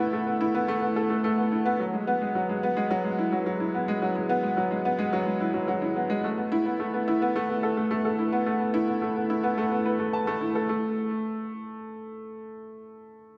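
A bright, woody upright piano, slightly detuned and worn, plays alone up front in this hopeful, luminous electronica passage cut from a longer piece, its straight 4/4 playing bathed in a wet concert-hall reverb as it moves into a new section at 10.7 seconds before stopping at 13.4 seconds.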